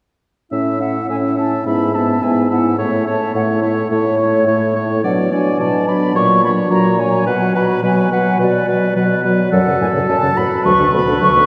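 Heard from farther back in a cathedral-like space with a long, wet reverb, this spirited, graceful fragment of a quick classical-period wind quintet movement sets a pure, tongued silver flute melody with expressive vibrato over a clear oboe second line, a dark, smooth-topped clarinet in the background and a mellow French horn in the accompaniment, while a punchy, up-front bassoon carries the bass, the five parts entering together at 0.5 seconds and playing through to about 11.5 seconds.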